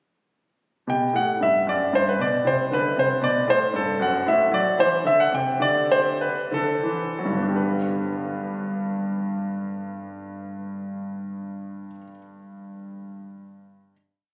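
A clear, polished grand piano plays alone in this short, complete baroque-style suite movement, serene and radiant in mood. Set in 6/8 with a rubato feel, it pairs a single-line melody with an independent bass line in counterpoint, moving through gently colored harmonies toward a cadence. The playing slows down from 3.2 seconds until the closing chord arrives at 7.5 seconds. That chord then hangs in a wet, cathedral-like reverb, and the piano sounds until 13.9 seconds. The instrument sits up front and present, with an intimate character and audible action noise, while the phone recording in the room carries a club-style reverb around it.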